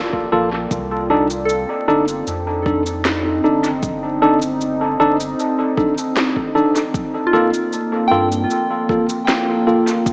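Ambient dub with a deep, meditative mood, cut from a longer piece, where a dark, moody pad holds sustained chords under warbling, pure FM bell arpeggios and a round, soft sub bass that drops out at 8.5 seconds. A worn, barky electric piano sits up front with echoing stabs, while an electronic kick and a woody snare with cabasa, both re-recorded in a large room, carry dub echo on the cabasa and snare. The echo-heavy mix moves from Gm9 to Cm69 and back, wrapped in chamber reverb, vinyl crackle and a small-speaker sound.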